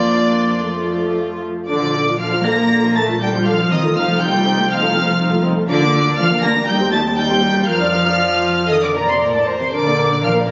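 A quick classical-period movement for string orchestra in Bb major at 118 BPM, cheerful and graceful, with a rubato feel, cut from a longer piece. A dark, woody violin section carries the lush melody with vibrato, while a clear, pure second violin line floats above an intimate, up-front viola accompaniment, and a warm, soft-attacked cello section and a close double bass section with vibrato share the bass, every section bowed sul tasto. Scoring-stage reverb blends with a club-like room sound, and the phone capture leaves the top end dull and muffled.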